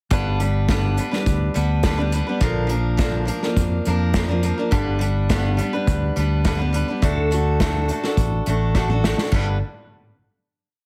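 Folk rock with a heartland rock spirit, this short, complete piece has a hopeful, open-road mood and a straight, steady pulse in four. A picked steel-string acoustic guitar sits up front with a warm dreadnought tone, strumming sixteenths in open chord shapes as the harmony moves from G to B-flat, back to G and on to D. Beneath it, a fingered electric bass with a dark, round, amped sound plays a dotted figure, while an unplugged drum kit played with bundle sticks keeps a pop groove from a punchy kick, a medium-tuned snare, hi-hat, toms and crash cymbal. A drum fill at 8.8 seconds leads into a final G chord at 9.3 seconds. The mix carries light reverb and a small room ambience, but the heavily compressed sound gives it the feel of a radio broadcast.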